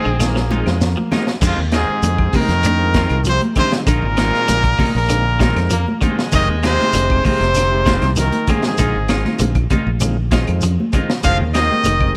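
A crunchy, gritty breakbeat kit with a tight kick and high-tuned snare drives this funky, defiant afrobeat excerpt at 98 BPM in straight 4/4, opening with a drum fill from 0.2 to 1.4 seconds, while ringing congas, grainy shekere and very quiet woody claves fill in the percussion and a round, punchy fingered electric bass sits up front. A clear trumpet carries the melody with vibrato over a brilliant trombone line, and a breathy baritone saxophone adds a very quiet second line only from 0.0 to 1.4 and again from 5.7 to 8.3 seconds. Behind them, one twangy clean electric guitar plays arpeggios through analog chorus, a second clean guitar adds bright stabs, and a reedy overdriven combo organ quietly comps over a Bb7sus4 and Fm7 vamp in F dorian, all under light reverb.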